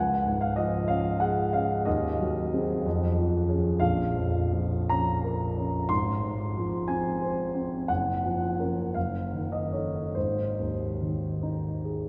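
A lilting 6/8 pulse moves at 46-64 BPM in dotted quarters with free rubato, giving this romantic classical character piece a hopeful, lyrical sway across its 12.1 seconds, cut from a longer work. A concert grand piano plays alone, up front with deep bass and a range from Gb1 to C6, moving through Db, Bbm, Gbmaj7 and Ebdim/Gb before settling on Ab at 10.2 seconds. The sound is heard from further back in a cathedral-like space, its long, wet reverb letting each chord hang in the air.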